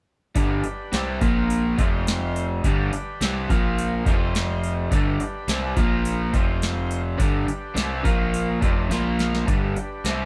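Swaggering and raunchy, this short cut from a longer blues rock power trio and southern rock piece struts along at 105 BPM in a straight 4/4. A crunchy, double-tracked overdriven guitar sits up front with a picked riff that cycles through G, Bb5 and F5, entering at 0.3 seconds. Beneath it, a bright, growly picked electric bass holds the low end with a punchy, direct tone. A booming analog drum machine, overdriven and re-recorded in a small room, drives the groove with a deep kick, crisp snare and metallic hats. In the background, a thick, gritty tonewheel organ sustains chords through a slow rotary speaker and adds a fill at 8.3 seconds, which a drum fill joins at 8.9 seconds. Light reverb gives the whole thing the feel of a band playing live in one room.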